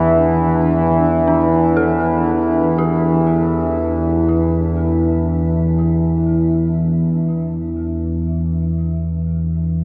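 Drenched in a vast, echoing cathedral reverb, this unsettling dark ambient drone, cut from a longer piece, floats in free time. An up-front analog drone with a nasal, evolving sawtooth and pulse-wave tone and chorus holds the low end, while a mellow, blurred granular cloud pad sustains chords in the background with shimmer reverb, fading out throughout. From 1.3 s an eerie, inharmonic FM bell, detuned and decaying, adds distant arpeggios through chorus, tape echo and shimmer reverb, also fading out as it goes.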